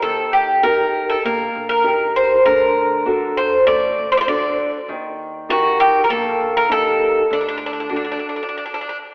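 A straight 4/4 pulse at 99 BPM drives this short, cool and moody Greek folk fragment in D phrygian dominant, cut from a longer piece. Up front, a bright, metallic Greek bouzouki carries the melody on picked double strings, some of them octave-doubled, while a dark, boxy parlour steel-string acoustic guitar supports it with fingerpicked accompaniment. Deep in the background, a woody pizzicato upright bass on steel strings holds down the low end. The harmony rocks between Eb and D, and the ensemble breaks into a stop at 8.5 seconds, with the bouzouki ringing on until 9.0 seconds. A wet plate reverb with a long tail places the group further back in the room, and a telephone-like filtering narrows the sound to a moody, distant haze.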